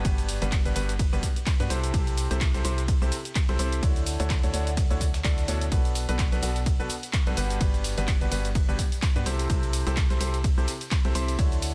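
A clear, polished concert grand piano carries the riff in this energetic, bittersweet piano house excerpt at 127 BPM with a swung 16th feel, its short-sustained notes pumping against the sidechain and trailing a digital delay through a progression of Gmaj7, C6, Dmaj9 and Bm7. Underneath, a hollow, organ-like FM bass with a fast, decaying attack pumps in the low register while a punchy electronic kick sits up front, joined by an analog drum machine's handclaps, hi-hat, ride and shaker and a very quiet, gritty sampler-style kit of hi-hat and snare. A very quiet tambourine enters at 5.7 seconds, adding a live-room touch to a dense, heavily limited modern mix set in digital ambience.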